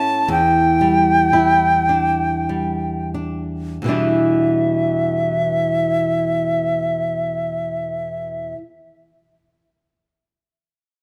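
Celtic slow air, haunting and mournful, in a rubato 3/4 at 40-60 BPM in E minor with A4 tuned to 439 Hz, this fragment of a longer piece sets an airy, reedy wooden flute singing its melody between E5 and A5 with tongued notes and vibrato, over a fingerpicked flamenco guitar with fresh strings that opens on an Em7 at 0.3 seconds, both parts up front in light reverb as the tempo slows through the first 3.8 seconds.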